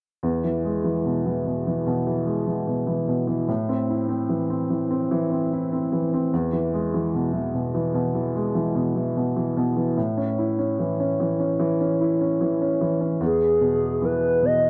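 In a straight, unhurried 4/4 pulse, this tender, hopeful pop fragment is cut from a longer piece and opens at 0.2 seconds with an upright piano carrying the accompaniment alone. The piano sounds woody and natural, sitting up front and moving through E, A minor, back to E and then A, with its register reaching from low E2 up to E4. At 13.2 seconds the harmony returns to E and a hollow, clarinet-like synth lead takes the melody in a higher register. This lead blends square and triangle tones with a noise layer, using a gentle attack, sustained notes, chorus and vibrato, and it also sits up front. Both parts end at 14.7 seconds, within a dark, warm production washed in a moderate plate reverb.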